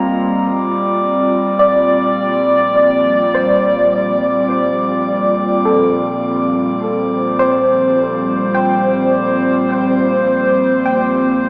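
Soaked in a lush hall reverb with a 2.7-second decay, this dreamy ambient excerpt has a small-speaker quality that lends it a spacious, reflective, faintly lo-fi air. At a slow 52 BPM in a straight 3/4, a warbly, tape-like pad sits up front, holding detuned, nostalgic chords on a Bbmaj7 under chorus, built-in reverb and shimmer reverb. Beneath it, a distant chamber double bass section bows an earthy, biting low line with light vibrato, staying in the background. High above, a glass harmonica adds a pure, ethereal texture with a beating, boxy small-room character and shimmer reverb, fading out across the whole passage. From 1.6 seconds, a soft, round pluck enters with dark, gentle arpeggios, dressed in lush chorus, diffuse ambient delay and shimmer reverb. The piece is cut from a longer work and stays within a single section.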